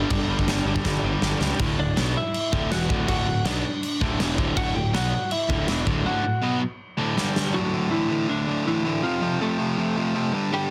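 Punk rock at 161 BPM in a straight 4/4, this upbeat, rowdy cut from a longer piece sits in D mixolydian and charges ahead on stacked riffing guitars. A lightly driven lead guitar, slightly broken-up and compressed, carries the melody across the full 10.7 seconds, while an up-front crunchy overdriven guitar holds down the riff beneath it. A second, double-tracked crunchy guitar, kept very quiet, and a bright overdriven semi-hollow guitar set in the background thicken the riff until 7.5 s. A growly fuzz bass, picked and direct-and-amped, drives the low end until it drops out at 6.0 s, and a big acoustic rock kit with a punchy kick, medium-tuned snare, crash cymbal and rolled-off top plays up front, with drum fills at 0.9 and 7.2 s marking the shifts between the riff sections. Light reverb and a dense, heavily limited modern master keep the sound loud, with the chords moving from G5 to D and on to F near the end.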